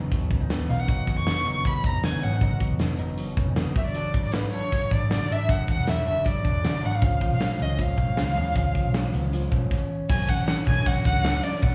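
A woody, dark violin carries the melody from 0.7 seconds over a slightly broken-up electric guitar playing arpeggios through a small old amp, with both parts touched by slapback echo, while a round, foam-muted vintage picked bass and a punchy, up-front rock drum kit with bright cymbals drive this breezy, nostalgic jangly indie pop fragment at 156 BPM through G#m, D/F# and C#, before a brief stop at 9.7 seconds gives way to Bmadd9 in a light club reverb that suggests a live gig.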